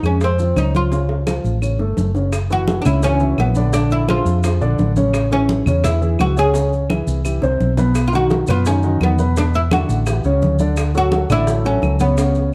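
Fiery and sophisticated, this brief excerpt of Afro-Cuban jazz in F# minor moves at a brisk 170 BPM, with a bright, woody oud carrying the melody up front through plate reverb while a dark grand piano with audible action noise supplies intimate, mellow chords. A round, amped hollow-body electric bass sits forward beneath them, and in the background thick-skinned congas, tight high-tuned bongos, and close claves that stop at 12.0 seconds fill out the percussion, joined by grainy maracas. Drum fills arrive at 0.9 and 6.5 seconds over a restless chord sequence, all within a dark, lightly reverberant production.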